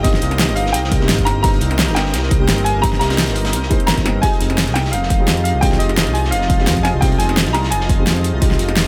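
A dark detuned saw bass sits up front in this dreamy, soulful stretch of liquid drum and bass, its deep, rumbling sawtooth tone beating with unison detune and holding sustained notes from a fast attack. Above it, a clear grand piano with a worn, short-sustain character carries the melody in a high register through tape echo until 8.2 seconds, while a felt-muted upright piano adds soft, boxy accompaniment through delay, its hammer action audible. A shimmering ambient pad floats in the background with slow-attack, granular chords lifted by an octave-up shimmer, chorus and its own reverb. The drums are layered: a punchy electronic kick and an up-front pop kit with a fat snare and bright hats drive the groove with a light swing, while a crunchy breakbeat kit sits in the background, saturated and gritty with a rolled-off top. The harmony moves from Cm7 to Fm9 at 4.2 seconds, and a small room reverb wraps the whole passage, which is cut from a longer piece.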